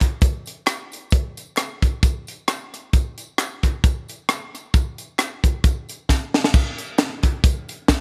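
Soulful and fervent, this short gospel cut rides a swung 4/4 groove at 133 BPM, carried from start to finish by a tight, acoustic funk drum kit that sits up front with a high-tuned snare, a tight kick, rim clicks, hi-hat and crash cymbal. Behind it, group handclaps, tambourine and a tube shaker add a small-room percussive sparkle in the background. The sound is dry and close, and a drum fill at 6.1 seconds ushers in a brief new section.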